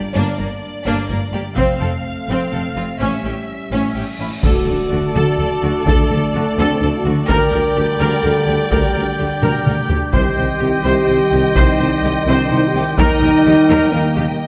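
A wet scoring-stage reverb surrounds this epic, heroic orchestral film cue in triple metre, cut from a longer piece. Lush, vibrato-rich violins carry the melody high above a second violin line, while clear, intense violas fill in the accompaniment and a dark, tight French horn section holds sustained chords. Cellos sit in the background beside smooth, even double basses, together anchoring the bowed low end under a minor-key progression that turns toward brighter major chords. A taiko ensemble with heavy sticks joins at 1.6 seconds, and a huge cymbal swell builds into an impact at 4.4 seconds, where bright, close-miked trombones, mellow woodwinds and a very quiet, warm solo tuba add their sustained weight. A drum fill at 9.4 seconds pushes the section onward, and a final cymbal hit marks the cut.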